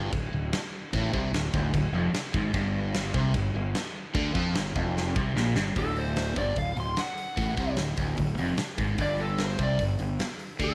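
A crunchy, double-tracked electric guitar riff drives this swaggering, gritty blues rock and southern rock power-trio passage, picked up front with overdrive and a phaser coloring its low register. Beneath it, a fingered electric bass adds growly fuzz and overdrive, while a big acoustic rock kit of kick, snare, hi-hat and crash sits forward in a bright stone room, with a punchy kick and a medium-tuned snare. The tempo is a brisk 149 BPM in straight 4/4, with the harmony moving between D5 and G5 power chords and a D chord. A drum fill at 5.0 seconds leads into a new section at 5.8 seconds, where a dark, overdriven slide guitar takes a solo high above the band, fingered and touched with slapback echo. Light reverb and small-room ambience frame this short cut from a longer piece.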